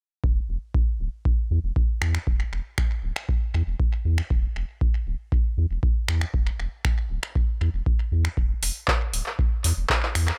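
A straight groove drives this raw, gritty acid house fragment, built on a deep, up-front analog kick and a round, sine-like sub bass that pumps with sidechain compression, its fast attack giving way to a mellow sustain. At 2.0 seconds a booming analog drum machine joins with finger snaps, handclaps and metallic hi-hats, its tape-warm tone smeared by tape echo. The room is dry, yet the mix leans heavily on echo.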